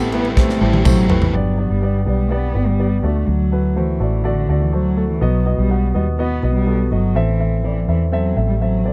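A straight 4/4 pulse at 124 BPM carries this hopeful, uplifting piano-driven pop fragment, where a punchy modern drum kit, a crunchy overdriven guitar riff, a barely audible lush string section and a brief, distant jingly tambourine drop away after a drum fill ending at 1.3 seconds, leaving a dark, woody bowed cello melody with vibrato over up-front baby grand piano accompaniment and a round, foam-muted fingered electric bass in a dry, close 1970s-style studio sound.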